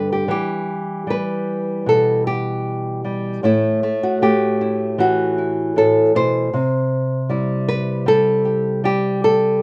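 Pastoral and peaceful, this short excerpt from a longer folk piece features a solo fingerpicked nylon-string guitar, dark, small and up front, moving freely through Em, A5 and C over about 9.6 seconds in a rough home demo mix with a wet studio reverb.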